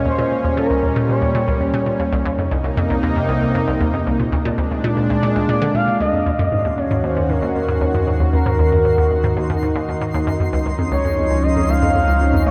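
Expansive and cosmic, this excerpt of ambient, sequencer-driven space music moves at 116 BPM in a straight 4/4, shifting from Bb dorian to Eb dorian at 6.3 s under a huge, wet reverb. A lush, thick unison pad sustains chords throughout while a hollow, nasal square-wave pluck bounces through a low riff up front, and a smooth, expressive sawtooth lead with vibrato and portamento sings a melody that returns at 5.5 s. From 6.3 s a round sine sub bass sits deep in the background, and a twinkling granular texture with octave-up shimmer fades in soon after.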